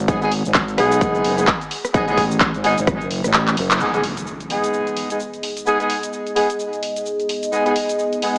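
Swung sixteenths drive this gritty, bouncy bass house fragment, where a punchy overdriven kick and a layered big-room kit of handclaps, hi-hat, rim click and shaker back a thick, growling FM bass and up-front warm horn stabs pumping through a low-pass filter and tape echo, until the kick falls away and the bass stops at 3.8 seconds as a drum fill and band accent lead into an electronic impact, after which a moody, detuned analog pad with chorus and phaser enters at 5.1 seconds, all set in a lush hall reverb with a small-speaker sound.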